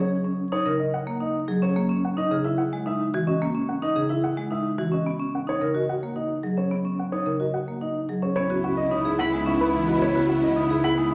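Meditative yet urgent, this short excerpt of minimalist classical pattern music moves at 109 BPM in a straight 3/4, centred in C# dorian. A warm baby grand piano carries the melody in a narrow upper range while an up-front vibraphone, metallic and ringing with a fast motor vibrato, spins arpeggios beneath it. From 0.7 seconds a woody, percussive marimba on padauk bars adds a dark, smooth accompaniment in the low register. At 8.4 seconds the texture blooms as the harmony settles on C#m9: a dark, soft-attack French horn sits in the background holding a second line, a lush symphonic violin section sustains expressive chords, and a bowed double bass section anchors a low C#. A single rich, smooth solo violin briefly adds a high arpeggio figure near the close, all set in a recital hall's reverberant space with vinyl crackle underneath.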